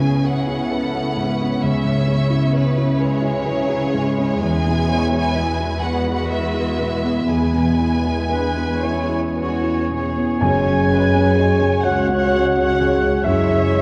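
Soaked in a wet scoring-stage reverb and the warbling pitch drift of worn old cassette tape, this moving, longing cinematic fragment unfolds in a rubato 6/8 at 36-44 BPM over C#m7, E and F#sus2, as a clear chamber violin section carries the melody with intense vibrato above a lush second violin line, a warm grand piano with audible action noise, a smooth viola section in the background, a very quiet ringing harp and a rich cello bass, before a distant solo oboe, an airy, hollow flute and a punchy, tight French horn section enter at 8.3 s, joined at 10.4 s by a dark double bass section and background timpani struck with hard mallets.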